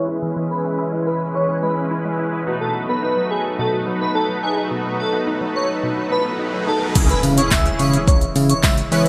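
A euphoric dance-pop excerpt at 107 BPM opens with an airy, dreamy lead melody floating over a fat, detuned sawtooth polysynth, a shimmering pulse-width pad and a lush, punchy unison pluck playing arpeggios in the background, all pumping against the sidechain under a filter sweep and moving through E6 and B7. An electronic riser enters at 6.2 seconds and lands with an impact at the drop at 7.0 seconds, where a glossy, nasal chorused synth bass and an up-front deep house kit with a deep kick, punchy snare, handclaps, hi-hat, shaker and crash cymbal arrive on C#m, joined briefly by a very quiet, jingly acoustic tambourine. A moderate plate reverb and bright 1980s-style digital production give the whole a retro sheen.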